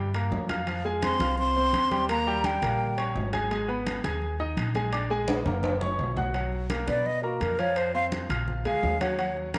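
Heard in a small room with moderate echo-chamber reverb, this sunny, sophisticated Afro-Cuban jazz excerpt at 169 BPM in Eb major sets an intimate, up-front baby grand piano with audible action noise and long sustain over a woody, thumpy pizzicato upright bass, with background congas and distant, ringing metal-shell timbales; a breathy, close-miked silver flute with vibrato carries the melody from 1.0 seconds above a dark trombone second line, a drum fill arrives at 5.3 seconds, and the flute then takes a hollow, mellow solo from 6.3 seconds.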